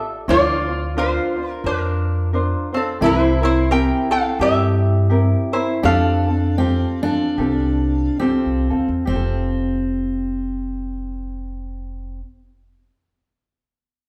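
Swung eighths in 4/4 carry this sunny, dreamy Hawaiian piece, which eases into a gradual slowdown between 3.0 and 9.1 seconds before moving into a new section. Up front, a nasal, metallic lap resonator guitar sings the slide melody with fingerpicks until it falls away at 8.2 seconds. Beneath it, a full-bodied jumbo steel-string acoustic picks a second line with audible finger squeak, a light thumb-plucked ukulele plays the accompaniment, and a dark, woody, thumpy gut-string upright bass sits forward in the mix, all captured as a band playing live in one room with a wet large-studio reverb.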